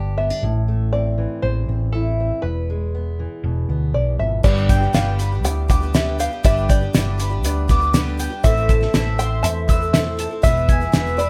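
A straight 4/4 pulse drives this stirring, yearning indie folk piece, where a twangy, plunky open-back banjo carries the melody over a fingerpicked steel-string acoustic guitar and a round, punchy hollow-body short-scale electric bass up front, until at 4.4 seconds the arrangement builds with a cloth-damped, thuddy drum kit with a fat snare and dark cymbals, a boxy, shimmering twelve-string acoustic guitar, mellow mandolin arpeggios, a woody upright piano and a grainy egg shaker in the background, while the fingerpicked guitar drops away at 6.4 seconds, all captured as a band playing live in one room with moderate studio ambience.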